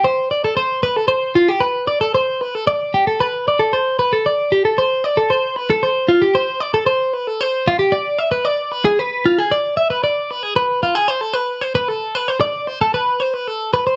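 Wistful and restless, this short rock passage in 6/8 is carried by a solo twelve-string electric guitar, its clean, picked, compressed tone sitting up front in a dark mix. The guitar moves within a narrow upper-middle register under a moderate studio reverb. At 11.1 seconds the music turns to a new section before the cut at 14.0 seconds.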